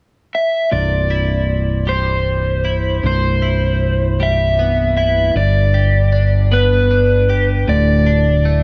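A light reverb and digital ambience frame this soaring, cinematic rock fragment in 6/8, cut from a longer piece. A crunchy, overdriven guitar carries the melody from 0.3 s through a digital delay, and at 0.7 s a bright, twangy twelve-string electric guitar joins with clean, compressed arpeggios shimmering through analog chorus and delay. Beneath them, a growling fingered bass with a round, punchy tone drives the Cmaj7, G and Dsus4 changes, with all three parts sitting up front.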